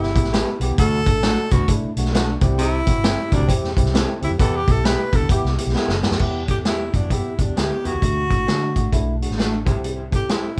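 A moderate studio reverb surrounds a band playing live in one room, with a saturated, gritty vintage drum kit sitting up front, its dark cymbals and tight kick driving this passionate, swung 1960s-style soul cut from a longer piece. A breathy, close-miked tenor saxophone takes a jazz-style solo full of scooped notes until 6.2 seconds, where a drum fill at 5.8 seconds leads into the next section. Beneath it sit a worn, barky tine electric piano that is slightly out of tune, a round, foam-muted fingered bass, twangy, slightly broken-up guitar stabs with tape echo in the background, and a clear baritone saxophone riff with light vibrato from 0.8 to 5.3 seconds.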